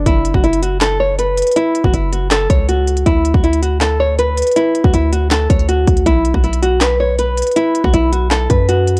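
Dry and gritty, with little reverb, this short cut from a longer trap piece has a close, hardware-tinged sound. It sits in F# minor at 160 BPM in 4/4 with a half-time feel, and the mood is melancholic yet hard-hitting. A fingerpicked nylon-string guitar carries the melody between E4 and C#5, its woody, boxy tone and old strings softened by a low-pass filter and trailed by analog delay. Beneath it, a punchy, heavy 808-style bass with a sine body, a noise layer and a fast attack that decays moves between F#1 and F#2. The electronic trap kit enters at 0.1 seconds with a hard-clipped kick, sharp snare, crisp hi-hats and handclaps, all kept up front alongside the guitar and bass. The harmony moves from F#5 to D at 3.1 seconds and to B5 at 6.1 seconds.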